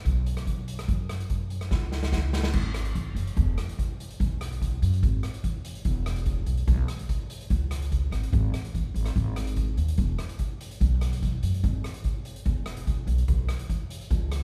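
Sunny and carefree, this calypso excerpt moves at a brisk 145 BPM in a straight 4/4 feel, carried entirely by bass and drums. An upright bass, plucked pizzicato on steel strings, sounds woody and thumpy as it holds down the low end from the very start. A street-band drum kit enters at 0.1 seconds with crash cymbal, hi-hat, kick, rim click and snare, its dark cymbals, medium-tuned snare and boomy kick sitting up front with an airy, polished character. A drum fill between 1.7 and 2.5 seconds ushers the music from its brief opening passage into a longer second section that runs to the end. The pair plays in a church or concert hall, where a moderate recital-hall reverb lends the groove a spacious, resonant setting.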